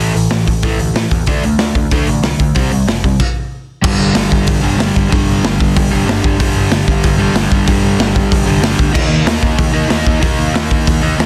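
A dense, heavily limited and nearly dry mix carries this rebellious, upbeat punk rock excerpt at 188 BPM, with a crunchy, double-tracked overdriven guitar riff and a gritty, saturated garage drum kit with a punchy kick and pumping small-room sound sitting up front, while a bright, growling overdriven bass sits in the background, the chords moving from A5 through D5 and C5 before the band breaks for a brief stop at 3.2 seconds and then pushes on through G5 and Eb5.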